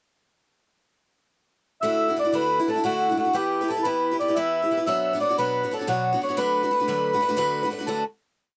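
A Celtic folk slip jig in D major, this short, complete piece moves at 119 beats per minute in a straight 9/8 with a rollicking, bright mood. A mellow accordion carries the melody from 1.8 seconds, its reedy, full tone built on motif-based period phrases and sitting up front. Alongside it, a picked steel-string acoustic guitar supplies accompaniment with eighth-note strumming in open chord shapes, sounding bright and also placed up front. The harmony moves through Dadd9, Em, Bmadd9 and D6 before both instruments stop around 8.0 seconds, leaving a final chord to close the tune. Light reverb and the soft grain of a home cassette recording give the whole an intimate, homespun character.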